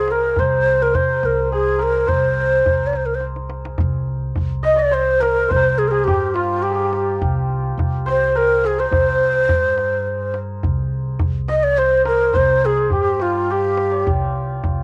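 Recorded at home onto cassette with a light reverb, this longing, soulful cut from a longer Persian modal piece in 3/4 sets a breathy, close-miked ney up front on the melody, its tape-tinged tone carrying expressive vibrato until 14.1 seconds, over a shimmering, ringing santur second line with its own cassette coloring, a woody pizzicato upright bass on gut strings, and a deep, dry tombak played with hard hands that drops a fill at 3.2 seconds as the music moves into a new section at 3.8 seconds.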